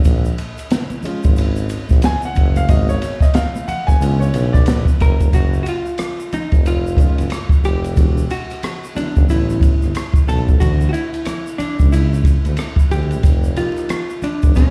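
A swung, relaxed jazz-hop groove rides on an open acoustic drum kit with a boomy kick, dark cymbals, rim clicks and ride, while a close, dry egg shaker and congas add texture and an up-front tuba, full of vibrato and scooped notes, carries the bass. A mellow, boxy baby grand piano with audible action noise takes the spotlight through the first 5.3 seconds, and a clean, compressed hollow-body electric guitar enters at 5.0 seconds with a picked melody touched by slapback echo. The smooth, dark mix has little reverb but carries the sound of a big system in a bare stone room, with vinyl crackle throughout this excerpt from a longer piece.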